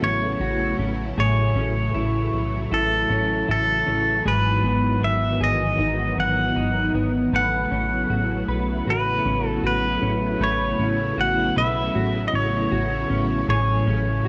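In a straight 78 BPM 4/4, this dreamy, ethereal dream pop excerpt in A lydian sets a bright, twangy pedal steel melody, up front with slide and volume swells through plate reverb and tape echo, over slow-attack string machine violas, a dark, clean semi-hollow electric guitar picking arpeggios through analog chorus, and a punchy, plucky analog bass, all moving from A69 through F#m9/A and G#m7 with the character of a home cassette recording.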